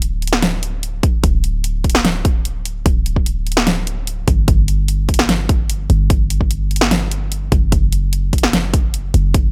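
In a digital ambience with up-front, produced drums, this playful, euphoric future bass passage moves at 148 BPM in a half-time 4/4 feel in D major, built on a deep, boomy, sine-based 808-style bass with a noise layer and sidechain pumping, a layered pop drum kit of hi-hat and fat snare, and a punchy electronic kick drum that joins at 1.0 s.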